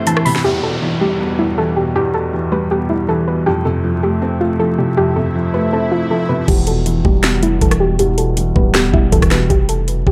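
Trap-flavoured hip hop in E phrygian at 159 BPM with a half-time feel, this brooding, menacing excerpt opens with a soft, round pluck melody carrying chorus and analog delay over felt-muted upright piano with audible action noise, while a thick pipe organ holds romantic chords in the background and an electronic downlifter and swell build beneath the Em and F harmony. At 6.5 seconds the organ drops out and the trap kit, heard only briefly at the very start, returns up front with a knocking kick, sharp snare, metallic hats, finger snaps, rim clicks and crash, joined by a deep, decaying sine 808 bass under a filter sweep. The echo-heavy mix carries light reverb and vinyl crackle, and a brief break lands at 9.5 seconds.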